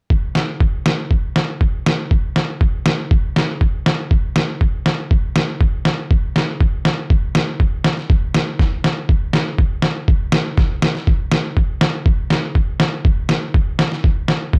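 A trip hop sampler-style drum kit opens the excerpt at 0.1 seconds, laying down a straight 2/4 groove at 120 BPM with kick drum and snare drum. Though the genre is klezmer, this short fragment from a longer piece carries only the drums, and they set a soulful yet festive mood. The kit sounds compressed and pitched down, with a thumpy kick, a medium-tuned snare and a muffled, overdriven grit that sits up front. A light reverb gives the hits a little space. The groove runs through two passes of the same section, the second starting at 8.1 seconds, before the drums stop at 14.6 seconds.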